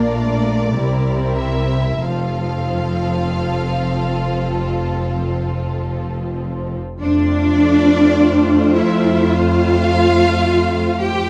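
A dark production with light reverb frames this tender, serene slow romantic movement for string orchestra, cut from a longer piece and flowing in a rubato 4/4. A lush violin section with a smooth top carries the bowed melody above a focused second violin line, while a warm, expressive viola section fills the middle. A close, rich cello section and a clear, even double bass section that sounds distant yet up front share the bass as the harmony moves from Bb through C7 to F by 2.0 seconds, and the opening idea returns at 7.0 seconds.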